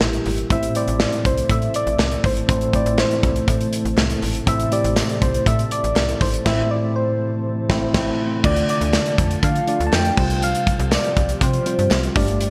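1980s-style pop at 121 BPM with a nostalgic yet urgent mood, this excerpt moves from Edim into a stretch on Am before shifting to Dm at 8.4 seconds and Csus4 at 10.2 seconds, with the band hitting a shared accent from 6.5 seconds. A round, gentle FM synth lead with chorus carries the melody over a worn, slightly out-of-tune tine electric piano with light overdrive, a glassy, ethereal FM pad with ensemble chorus sitting in the background, and a snappy, metallic slap-like FM bass. Up front, an acoustic drum kit with a medium-tuned snare, punchy kick, hi-hat, crash and tambourine rides a gated reverb, while a very quiet, crisp group handclap adds a vintage touch, all set in a lush hall within a bright digital 1980s-style production.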